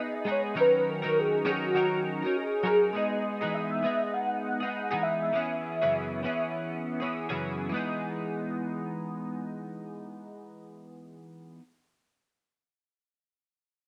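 Nostalgic and dreamy, this indie pop fragment has a lilting swing. A velvety, detuned sawtooth synth lead carries the melody with chorus, vibrato and delay over a bright, twangy twelve-string electric guitar, which is picked, compressed, up front and warbled by analog chorus and pitch drift. The synth sings until 7.1 seconds, and the guitar continues alone until 11.6 seconds, its Emaj7, D#m7 and F#9sus4 chords wrapped in moderate spring reverb and digital ambience.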